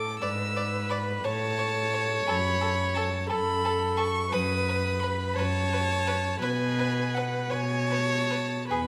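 Classical and serene, this brief excerpt from a slow romantic string quartet movement sways in a gentle rubato 6/8, its chords drifting through A, F#m and B7/F# before settling on Amaj9/B. A single violin carries the high melody with an airy, sul tasto bow and light vibrato, while a second violin floats a pure, soft line in the background, a close and intimate viola fills the middle up front, and a rich, floating cello anchors the bass. A moderate recital hall reverb of 1.5 seconds gives the whole quartet a soft halo.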